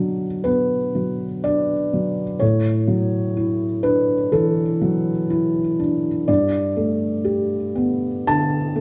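Tender and hopeful, this neoclassical minimalist piano piece is cut from a longer work and lasts just under nine seconds. A felt-muted upright piano plays alone throughout, its thick felt lending a dark, intimate tone that sits up front. The rubato phrasing in 4/4 moves from Bm to Dadd9/A at 2.4 seconds and on to Gadd9 at 6.3 seconds, ranging from G2 to A5. A moderate large-studio reverb gives the sound a sense of space, while the top end is rolled off above 7.9 kHz, deepening the mellow, vintage character. It feels like a performance captured live in one room.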